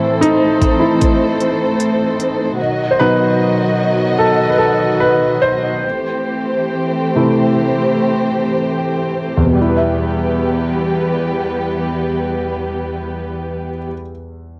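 Through a home cassette recording with light reverb, this melancholic, heartbroken pop ballad excerpt in E harmonic minor moves at 58-76 BPM in a straight 4/4. A clear, worn concert grand piano with deep bass and short sustain takes the solo and slows from 2.6 to 9.6 seconds as the harmony moves through Am, B and C6 before landing on Em. A dark, woody studio string section plays lush, bowed, sustained sul tasto chords with vibrato, and an electronic pop drum kit with a knocking kick and crisp hats appears only from 0.2 to 2.4 seconds.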